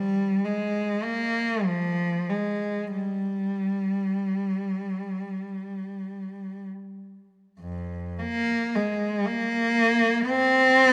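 A classical, yearning and meditative solo for unaccompanied cello, its rich, up-front bowed tone shaped with vibrato and portamento across a free, rubato 6/8 at a slow 16-41 BPM, ringing in a moderate concert hall reverb over this brief 10.9-second cut from a longer piece, with a new section arriving at 7.6 seconds.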